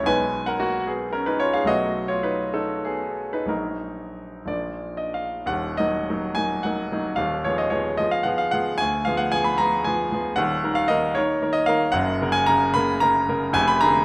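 A clear concert grand piano sits up front in a wet recital hall, its reverb trailing about 1.9 seconds behind each short-sustained note. This romantic character piece for solo piano is in Eb minor and 6/8, moving at a rubato pace of roughly 58 to 78 dotted-quarter beats per minute, with a bittersweet, stormy mood. The piano is the only voice, spanning from a deep low Eb to high B, and its tone is polished and present. The opening phrase passes through Abm/Cb and B7 before settling toward Ebm/Bb and Bb, and a new passage begins at 5.5 seconds on Ebm. From there the harmony darkens through Fm7b5/Eb and Ddim7, opens onto a bare Eb5 and Gb, and ends unresolved on Bb7/F as this 14-second fragment of a longer work breaks off.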